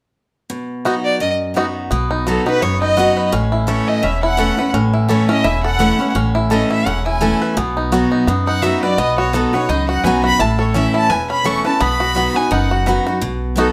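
A swung 4/4 groove at 170 BPM drives this joyful, virtuosic bluegrass passage in B mixolydian, moving between B and A chords. A full-bodied, picked acoustic guitar starts at 0.5 s, a twangy, fingerpicked banjo plays arpeggios up front, and a clear bowed fiddle carries the melody with light vibrato and plate reverb from 1.0 s. A woody, thumpy pizzicato upright bass enters at 1.9 s, and a second fiddle, earthy and very quiet, adds its own line inside a moderate studio room.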